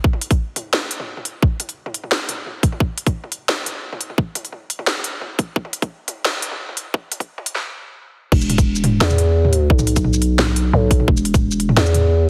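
Spacious and cinematic, this half-time drum and bass excerpt at 174 BPM builds through a filter sweep as a tight, tape-warm electronic kick and a layered, up-front kit of cracking snare, crisp high-passed hats, crash, shaker and toms drive forward, halts in a brief stop at 7.6 seconds, then drops at 8.3 seconds into a growling, buzzy 808-style bass with a fast attack, all framed by light reverb and a heavily compressed, radio-like sound.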